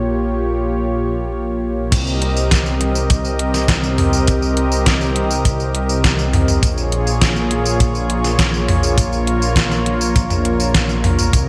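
A straight 4/4 pulse at 102 BPM arrives at 1.9 seconds, when a tight, airy kick drum joins a detuned 8-bit drum machine whose fat snare, hi-hat, tambourine, toms and crash carry gated reverb, pushing this moody, cinematic synthwave passage forward. From the start a mellow, chorused analog pad holds sustained chords that pump against the sidechain, while a deep, rumbling saw bass with tube saturation beats beneath it, moving from Bbm through Cm7 to Bbm7. The sound is bright 1980s-style digital production set in a lush hall reverb, cut from a longer piece.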